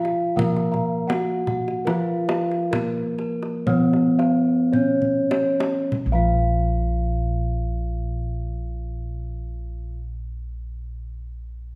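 Mellow, softly padded bronze bossed gongs sit in the background in the bass, anchoring this stately, hypnotic passage of Javanese gamelan in 4/4 at 47-91 BPM, cut from a longer piece. Bronze metallophones carry the melody and accompaniment with ringing tones, while a metallophone struck with a wooden mallet and a set of round, beating bossed gongs up front spin out arpeggios. The ensemble slows through the opening 5.9 seconds as a tight, band-limited kendang plays a fill from 4.7 seconds and drops out at 6.5 seconds, all set in a moderate recital-hall reverb.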